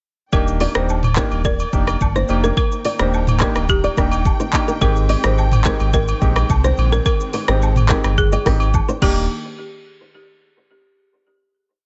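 Afrobeats with a sunny, joyful feel, this short piece is a single chorus built on a woody, dry marimba hook with tape echo, clear syncopated piano chords and a fingerpicked acoustic flamenco guitar riff, an interlocking repeated figure doubled in sixths, that enters at 0.6 seconds. Underneath, a deep, up-front sine sub bass bounces in a syncopated line against an electronic afro-pop kit with a soft kick, syncopated rim clicks and shaker, while agogo bells and woodblock tap out a bell timeline and a lush, dark string section sustains a pumping pad in the background. The dry mix moves from Ebmaj7 to Abmaj7 and back before closing on a final hit from 9.3 seconds.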